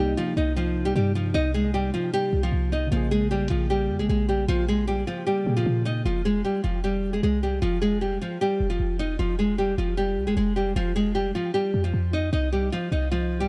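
A dry, gritty hardware recording with studio reverb carries this eerie, hard-hitting trap excerpt in F minor at 153 BPM with a half-time feel, its chords moving from Cm7 and Bbm7 to Fm and Cm. Up front, a full-bodied, fingerpicked nylon-string guitar carries the melody through analog delay. A deep, boomy 808-style bass with a clean sine tone runs underneath throughout, while muted, felt-like synth keys with chorus sit soft and dark in the background until 6.1 seconds.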